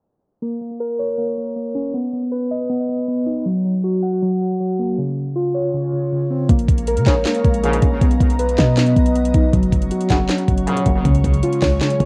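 Muted, felt-like synth keys carry intimate arpeggios with chorus, tremolo and tape echo through an opening filter sweep, until a half-time trap kit of knocking kick, sharp snare, handclaps and metallic hats arrives at 6.5 seconds with a deep, boomy 808-style bass, while a glassy, ethereal FM pad holds sustained chords and a clear brass ensemble adds tape-echoed stabs, all parts set in light reverb in this dark, eerie hip hop excerpt that has the muffled, low-passed tone of a home cassette recording.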